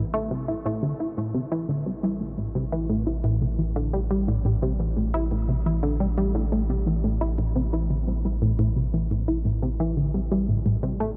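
A tight, detuned sawtooth sequencer riff with chorus and delay drives this short, expansive and cosmic piece of ambient space music, a filter sweep running across its arpeggio while a round, deep analog bass holds a low A beneath it, all set in a huge ambient reverb with a long 7.5-second tail, in a passage cut from a longer piece.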